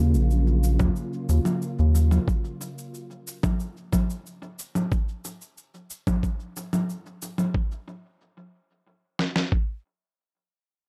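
A silky string machine, thickened by ensemble chorus, holds a soft Ebm9 chord over a round, deep analog bass with tube saturation, both stopping at 2.2 s in this wistful sunset chillout passage at 91 BPM in Eb minor. Overdriven cabasa and congas, layered and re-recorded in a large room with tape echo, sit up front and run until 7.5 s. From 0.8 s, a gritty, compressed sampler-style kit with a thumpy kick and medium-tuned snare adds its own overdrive to a dry, echo-heavy mix.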